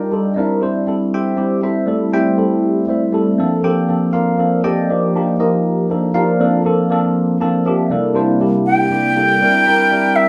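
A bright tine electric piano opens this short jazz clip alone, sounding clean and direct up front with a phaser coloring its chords. In a straight six-eight feel, it moves through C7, Am7, Bbmaj7 and Ebmaj9 before settling back on Bbmaj7, creating a slick, sunny mood. At 7.1 seconds the piano plays a brief fill that leads into a return of the opening section on C13. At 8.7 seconds a reedy concert flute enters with the melody, airy and tongued with a straight tone, sitting up front with a slapback echo. A moderate studio reverb and small-room ambience keep the sound close and polished as the clip cuts off mid-piece over C7.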